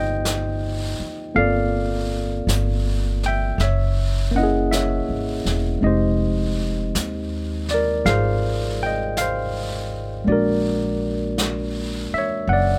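Intimate and romantic, this slow jazz ballad excerpt moves at 54 BPM in 4/4 with a swung eighth-note feel, carried by a chord progression that runs from Cm9 through Gm11, Gb9 and Fm7 before landing on Bb7alt. A worn, slightly out-of-tune electric piano with a barky, clean tone through a combo amp sits up front as the accompaniment, alongside a woody, growly pizzicato upright bass on steel strings, also up front. From 0.3 seconds a natural-sounding brush kit on brushed snare and hi-hat adds soft texture in a studio room, and the whole recording stays dry, with little reverb.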